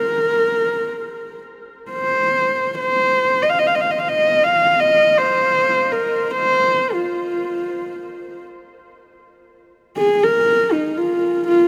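A dark, husky horsehead fiddle plays alone and up front in this solemn, windswept Mongolian folk excerpt, ranging in free time through the F yu mode between Eb4 and F5. One player's airy bowing, soft attacks, light vibrato and sliding portamento give the fiddle an intimate, close presence. A huge ambient reverb surrounds the instrument, and the music turns to a new section at 9.5 seconds before the cut at 11.7 seconds.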